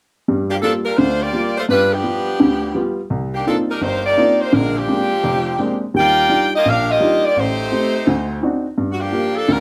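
Swinging jazz with a sultry, brassy mood, in which an edgy, close-miked saxophone section carries the melody with vibrato from 0.5 s over a woody, polished upright piano accompaniment that enters at 0.3 s, both parts up front in a club-like reverb as the chords move from Gm7 through Cm11 and Ebmaj9 to a D7b9 turnaround and back to Gm7.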